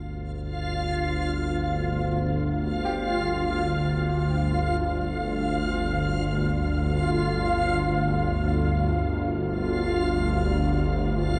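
Dark ambient drone in free time, this cavernous, desolate fragment is cut from a longer piece and hangs in a huge, wet reverb with a long seven-and-a-half-second tail. A string-like, bowed-like drone sits low and up front from the start, its detuned sawtooth unison carrying a tense edge, a noise layer, vibrato, slow attack and long release, while a filter sweep runs across it for the full 11.4 seconds. From 0.5 seconds a backwards swelling texture joins higher up, a reversed, granular, triangle-based layer that sounds dreamy and detuned, with a soft attack and its own built-in reverb. Between them in register, a brilliant concert grand piano plays very quiet arpeggios in its middle range, present and carrying deep bass despite its low level. The dark production shows lossy compression artefacts, adding a worn grain to the sound.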